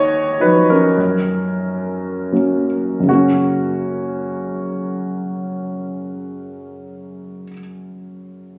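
Set in 3/4 with free, breathing rubato, this brief cut from a longer classical piece moves between 77 and 109 BPM, easing back through its first 3.1 seconds. A lyrical solo concert grand piano carries the whole 8.6 seconds in F# major, its dark, mellow voice reaching from deep bass notes up through the middle register. The harmony opens on D#madd9 before settling onto F# at 1.0 seconds, giving the phrase a warm, sunny glow. The piano sits up front and feels intimate, with its smooth, vintage tone and audible action noise bringing the listener close to the instrument. Captured on a phone in the room and dressed with light studio reverb, the sound stays close and unfussy as a second phrase follows the first.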